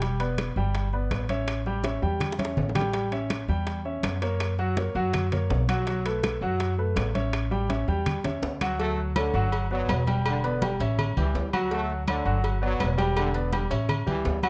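Opening on warm, up-front grand piano and a dark, woody pizzicato upright bass over tight high bongos with cowbell, soft damped congas and ringing timbales with agogo bells, with very quiet woody claves joining at 0.4 seconds, this festive, joyful salsa excerpt at 164 BPM moves through Em7 and A7 changes, with drum fills at 2.2 and 8.1 seconds, before a brilliant, tight trombone section with light vibrato enters at 8.8 seconds as the harmony turns to Dmaj7 and Gmaj7.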